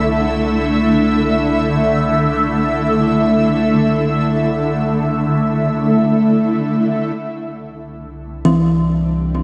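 Luminous and warm, this ambient fragment, cut from a longer piece, rests on a shimmering, ethereal pad that holds a Dsus2/C chord before settling onto C at 7.2 seconds, its slow granular glow coloured by chorus and phaser, while a round sine sub bass fades out beneath it over those first 7.2 seconds and an up-front, woody kalimba enters at 8.4 seconds with short arpeggios trailed by tape echo, the music set inside a lush hall reverb and a dark production.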